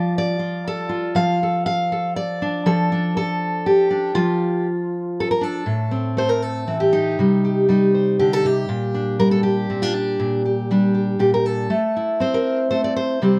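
Folk piece for solo fingerpicked steel-string dreadnought acoustic guitar, haunting and melancholic, moving at 120 BPM in 3/4 with a straight feel. The guitar sits up front with a dark tone in light reverb, ranging from A2 to F5 across this 13.4-second cut from a longer piece. It opens on Dm/F and shifts at 5.7 seconds into a new section that passes through Am, Cm and Gm/Bb before returning to Am.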